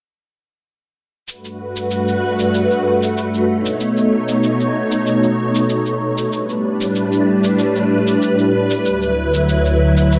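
Sunny and relaxed, this sunset chillout excerpt moves at 95 BPM in 4/4 with a light 16th-note swing, set in G lydian and tuned to A4 = 437 Hz. A silky, vintage string machine sits up front with slow-attack sustained chords from 1.3 s to 10.2 s, colored by phaser and ensemble chorus as it moves through Gmaj9, B9, A9sus4 and D69. A quieter, layered electronic cabasa with a tape-warm touch and studio reverb plays alongside over the same span, all within a dark production bathed in a moderate plate reverb.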